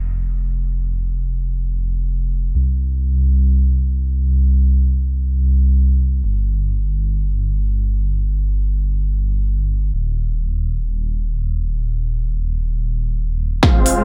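In free time, this emotional, powerful cut of festival progressive house in F minor, tuned to A4 = 439 Hz, opens on a detuned saw bass that carries the whole passage from 0.0 s. The bass is thick, beating and menacing, a dark, saturated sawtooth-and-sine tone with a fast attack and long sustain, pumping under sidechain compression up front in the mix. At 13.6 s a drum fill bursts in: a punchy, layered electronic kick sits up front, while a big-room dance kit adds a punchy snare and crisp hi-hats, low-pass filtered and tape-warm, re-recorded in a large room. At the same moment a huge, airy supersaw riff arrives, a dense, compressed and bright stack of detuned unison saws with a sub octave, a noise layer and vibrato, sidechain pumping and low-pass filtered. The overall sound is dry, with little reverb.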